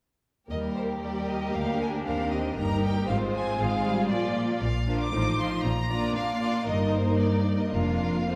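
This quick classical-period movement for string orchestra is a lively, cheerful passage cut from a longer piece, moving at 116 BPM in 2/4 with a rubato feel. It opens in Eb major at 0.5 s and turns toward Bb major at 4.6 s, passing through chords such as Fm/Ab, Bb7/Ab and F7/A along the way. The first violins carry the melody with a smooth, even vibrato tone, while a second violin section supplies a focused inner line beneath them. Violas fill in the accompaniment with a similarly focused sound. Lush symphonic cellos and intense, lightly vibrato double basses share the bass, with the basses dropping out at 8.2 s, just before the others. The whole ensemble sits in a wet scoring-stage reverb and is heard from further back in the room, giving the bowed strings a spacious, rounded glow.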